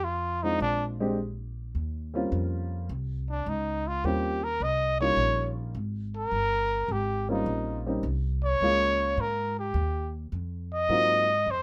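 A breathy, intimate trumpet with vibrato and a soft attack carries the melody and stretches into a solo from 1.8 seconds in this relaxed, swinging small-group jazz excerpt, backed by a woody pizzicato upright bass up front and a dark, mellow upright piano in a lightly reverberant room.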